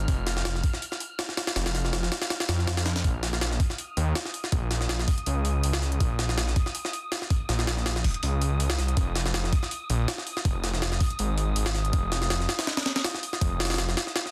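A dense, heavily limited modern mix with light reverb carries this frenetic, dark drum and bass excerpt at 162 BPM in Bb minor, with a slight swing on the 16ths and chords moving from an opening free of any chord to Bbm at 3.0 seconds and Fm7 at 9.0 seconds. Up front, a gritty, pitched-up jungle sampler-style kit with a thumpy kick, high-tuned snare, hi-hat and small room ambience runs alongside a thick, beating, saturated detuned saw bass that sounds menacing in the low register. In the background, an airy, breathy wind-like noise texture sustains high above, carrying its own built-in reverb.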